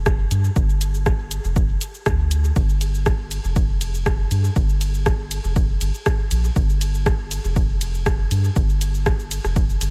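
Dub techno in G minor at 120 BPM, this short excerpt from a longer piece has a deep, cavernous mood and a lightly swung 4/4 feel. A soft sub bass sits up front from the start, its round tone built from triangle and square waves with a fast attack and sustained notes, moving between F1 and G2 and pumping under sidechain compression. An electronic kick drum with an analog, punchy character and a tape-warm edge is also placed up front, entering at 0.1 seconds. Alongside it, a tape-warm analog drum machine supplies hi-hat, ride cymbal, rim click and shaker, set lower in the mix and trailed by dub echo. The whole passage stays in a single section wrapped in digital ambience, giving the sparse groove a sense of depth and space.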